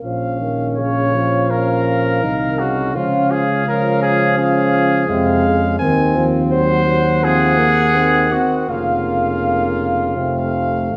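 Grave and solemn, this brief classical passage for brass quintet is cut from a longer piece and moves with a flexible, rubato feel in four. A clear trumpet with light vibrato and a punchy edge carries the high melody, while a second, mellower trumpet enters at 0.8 seconds with its own line beneath, sounding up front yet touched by a roomy, distant quality. A clear French horn and a mellow, distant euphonium fill out the middle with accompaniment, and a mellow tuba with light vibrato and a smooth top anchors the bass, sitting close in the mix. The harmony settles in a minor key, shifts to a brighter major chord, passes through a diminished chord and comes to rest on an unresolved dominant at the close. A wet recital hall reverb surrounds the ensemble, lending the sombre passage a spacious, ceremonial resonance.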